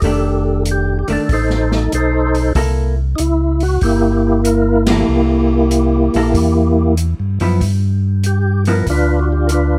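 A dry recording catches a bluesy, greasy soul jazz organ trio swinging at 95 BPM in C mixolydian, where a fat, lightly overdriven tonewheel organ with percussive key click and slow rotary speaker carries the melody over a round, mellow organ bass line, a dark, picked hollow-body guitar comping until 8.9 seconds, and a small-room drum kit with dark cymbals and a boomy kick, all hitting a band accent at 4.8 seconds as the chords move from F13 to C6 to G7.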